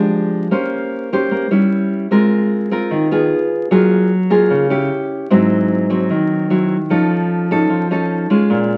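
Heard through the crackle of a very old 78 rpm record and bathed in a lush large-studio reverb, this brief bossa nova fragment, cut from a longer piece, has a relaxed, romantic glow. A lone nylon-string guitar sits up front, fingerpicked in a classical manner with the warm tone of fresh strings, moving through rich, colorful jazz harmonies such as Ab69, Gbmaj9 and a closing F7alt. The guitar spans from Ab2 up to C5 across the 8.8 seconds.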